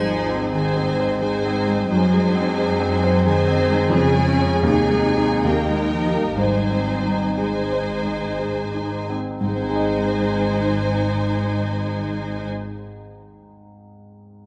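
Moving in a rubato 3/4 that ranges between 57 and 90 BPM, this lyrical, lush classical passage in Ab major, tuned to A4 = 435 Hz, is cut from a longer piece and slows down through much of its opening section. A baby grand piano with an open, long-sustaining tone carries the melody, while a violin section sings high above it with smooth, even vibrato, and a second, more distant and intense violin section traces a supporting line. Violas add expressive accompaniment with portamento, a mellow French horn section holds sustained chords in the background, and cello and double bass sections anchor the low end with a rich, bowed sound. Very quiet timpani struck with hard mallets enter at 9.4 seconds as the music moves into a new section, and the orchestra stops at 12.5 seconds, leaving the piano alone until 14.5 seconds. The harmony moves from Ab through Ab7/Gb and Db/F to Eb before returning to Ab, and a moderate scoring-stage reverb surrounds the ensemble.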